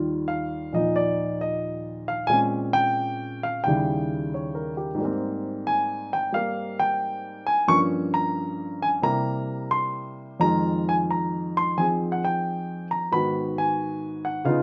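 A baby grand piano opens alone in this short solo jazz passage, which is cut from a longer piece, sounding polished and up front with a warm, present tone. The mood is playful and warm, set in Eb major at 89 BPM in 4/4, with a swung eighth-note feel and a rubato approach to time. The piano covers a broad span from Eb2 up to Db6 across the full 14.6 seconds. The harmony moves through rich extended chords, beginning on Ebadd9 and passing through Bbm9, Eb7b9 and Abmaj9 before turning to Gm7b5, C7 and Fm9, and it closes the passage on Abm7. A moderate studio reverb gives the instrument a sense of space, and the tuning sits slightly below standard at A4 = 439 Hz.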